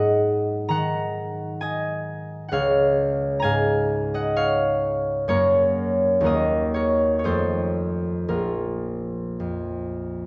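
A lone concert harp opens this brief classical fragment, fingerpicked and placed up front, its notes ringing with a warm, acoustic body. The mood is mysterious and wistful, unfolding in a flexible, rubato three-beat metre that lets each phrase breathe. The harp spans from a deep Bb1 to a high Bb5, and the harmony moves from an Ab chord through Db, Gb and Ebm before an F7 at 7.3 seconds leads to Bb at 8.3 seconds. A moderate recital-hall reverb surrounds the instrument, giving it a natural sense of space. Lasting about 10.3 seconds, the passage feels cut from a longer piece.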